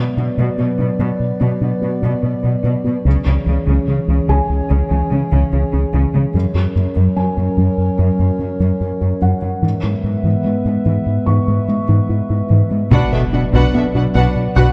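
A straight 4/4 pulse at 73 BPM carries this brooding, vast excerpt of hybrid orchestral and electronic film score in B dorian, where an up-front, round analog bass riff and a rich cello section anchor a detuned, moody analog pad with chorus, while a very quiet soft pluck traces arpeggios and a felt-muted upright piano, intimate with audible action noise, adds texture through tape echo. The chords move from Bm through C#m, F# and E before returning to Bm at 12.9 seconds, when lush violin and viola sections, heavy-stick taiko and a huge, bright impact all enter together. A moderate scoring-stage reverb and a dark production shape the whole sound.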